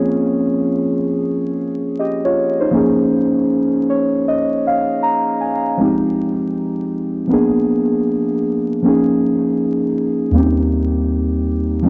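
Dark, crackling vinyl-tinged production in a wet small room frames this hazy, reflective hip hop excerpt, where a lone muted, felt-like synth keys part with a warbling chorus and cassette-tape character plays swung jazzy chords such as Bbm9 and Eb9sus4, adding a fill from 3.5 to 5.8 seconds before shifting to a new section.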